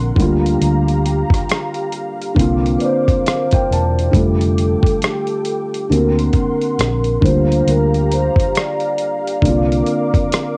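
Cosy and mellow, this lo-fi hip hop excerpt drifts along with a gentle swing on the sixteenths. A felt-muted upright piano sits up front, its thick felt giving a soft, intimate tone with audible action noise and a cassette-tape tint. The piano plays a fill from 2.4 seconds. Behind it, a detuned sawtooth pad holds slow-attack chords with chorus and a long release, while a foam-muted electric bass adds a round, amped low end until it stops at 9.8 seconds. A dusty sampler-style drum kit of hi-hat, thumpy kick and rim click sounds gritty and compressed through its own tape coloring. From 2.8 seconds, a vibraphone with soft mallets carries the melody in a metallic, ringing voice with slow motor vibrato, over chords such as Gm7/D, C9sus4, F69 and Daug7, all set in a light reverb.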